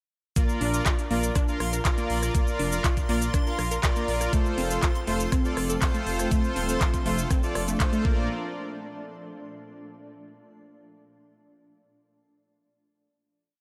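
An uplifting, expansive progressive house piece in Bb major at 121 BPM opens directly into its drop at 0.4 s, where a knocking, tape-warm four-on-the-floor electronic kick sits up front beside a pop drum kit of crisp hi-hats, shaker, rim clicks and handclaps, while a mellow unison pluck runs a 16-step arpeggio and a soft, smooth supersaw with cassette tape character plays dotted-rhythm chord stabs, both trailing dub echo and sidechain pumping along with the dark, rumbling detuned saw bass on the off-beats; a very quiet reversed, bright texture holds a high note from 1.6 s, a shimmering, chorused ambient pad adds ethereal sustained chords from 5.1 s, and the harmony moves from Bb to F and back before a final hit closes the piece at 8.3 s in a lightly reverberant space.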